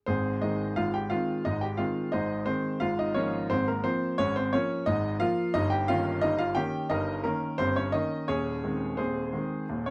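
A brilliant, up-front baby grand piano sounds natural in a light reverb, carrying this cheerful, playful classical-period sonatina at 88 BPM in 4/4 with a straight feel. The solo piano spans Eb1 to G5 in Ab major, tuned to A4 = 439 Hz, moving from Ab through Bbm7/Ab and Eb7/G to Ab/Eb. The passage runs from 0.1 to 9.9 seconds and is cut from a longer piece.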